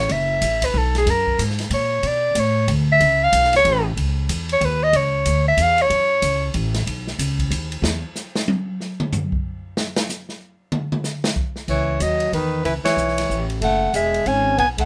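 A light reverb gives this smoky, swinging small-group jazz waltz fragment an airy feel. A mellow, breathy soprano saxophone solos up front with vibrato over woody, thumpy pizzicato upright bass on gut strings and a polished drum kit with dark cymbals and a boomy kick, before the drums take a solo from 7.8 seconds. At 11.7 seconds the soprano and bass return with a bright alto saxophone adding a scooped, soft-edged second line, and the band hits an accent at 12.8 seconds.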